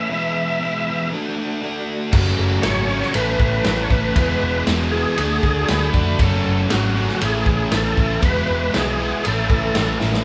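A confident, swaggering classic rock cut opens on a gritty, overdriven tonewheel organ melody through a slow rotary speaker, over a very quiet mellow organ holding chords and a crunchy overdriven guitar riff; at 2.1 seconds a punchy vintage drum kit, a round hollow-body bass, a double-tracked biting guitar, a bright semi-hollow guitar and a barely audible metallic cowbell join at a straight 118 BPM in A major, with a dark octave-fuzz lead line flaring briefly at 5.7 seconds and a drum fill at 10.0 seconds, all captured as a band playing live in one large studio room.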